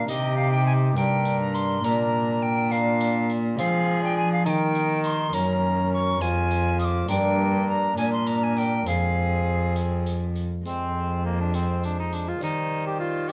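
A wet stone room surrounds this short passage of a classical, Renaissance-style consort dance, cut from a longer piece, and gives it a rustic yet courtly air in a steady 6/8. A bright, airy alto recorder with a woody tone, soft attack and vibrato carries the melody, while a mellow, punchy cor anglais with light vibrato shapes a second line beneath it. Up front, a single bowed cello plays the bass with a nasal, reedy gut-string tone that still sounds distant in the room. A warm bassoon and a ringing, fingerpicked concert harp sit in the background as accompaniment, and a jingly, vintage-sounding tambourine joins at 0.1 s. The harmony moves among minor and major chords, including a striking Gb, before the music turns to a new section at 10.7 s and comes to rest on Cm/Eb at 12.4 s.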